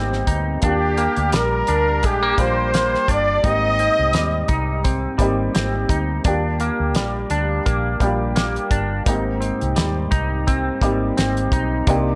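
A laid-back, sunny indie and bedroom pop groove at 85 BPM in 4/4, with a light 16th-note swing. A damped 70s drum kit with a fat snare and tight kick sits up front, alongside a round, foam-muted vintage bass, a clean, compressed semi-hollow guitar with analog chorus and vibrato, and a woody, slightly detuned upright piano whose action noise can be heard, all moving between Abmaj7 and Ebmaj7. Close-miked and up front, a trumpet carries the pop-style melody with scooped notes and vibrato, dressed in ensemble chorus and slapback echo, from 0.7 to 4.9 seconds, all set in a small, lightly reverberant room in this excerpt cut from a longer piece.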